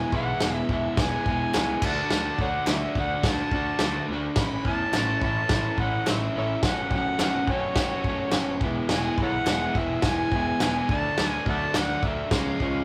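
An overdriven, amplified harmonica carries the melody in this gritty, swaggering garage rock excerpt, its punchy lead marked by tongue slaps and light vibrato. An overdriven, double-tracked electric guitar riff sits up front beside a growling picked bass with bright distortion, while a vintage drum kit with dark cymbals, a tight kick and a medium-tuned snare drives a straight 106 BPM in 4/4, and very quiet, crisp group handclaps enter at 0.4 seconds. The chords move from E through D, A and F#m before landing on C#, all captured in a rough rehearsal-room recording with a wet small-room reverb.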